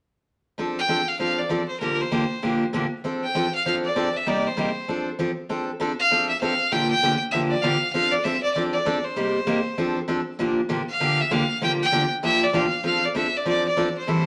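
Swung eighths in a bouncy 4/4 drive this cheerful, playful country passage, cut from a longer piece, where a bright, full-bodied jumbo steel-string acoustic guitar with fresh strings picks F6, Bb6 and Cm7 chords from 0.6 seconds while a single bowed fiddle, focused and close with light vibrato, carries the melody up front from 0.8 seconds, both moving into a second section at 5.5 seconds within a wet studio reverb.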